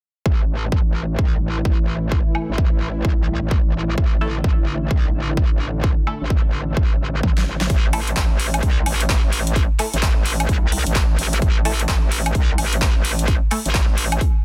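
A swaggering, gritty bass house excerpt opens at 0.3 s with a punchy, up-front kick, a metallic, saturated FM wobble bass with chorus and sidechain pumping, and an airy, evolving sawtooth pad with chorus that sustains chords until 7.7 s. A big-room dance kit with a huge snare, hi-hats, handclaps, toms and woodblock makes a brief early appearance, then returns at 6.1 s and plays through a drum fill to carry the second half, while a nasal, band-passed chord stab with phaser, sidechain pumping and dub echo joins from 4.2 s. The dense, heavily limited master sits in a digital ambience.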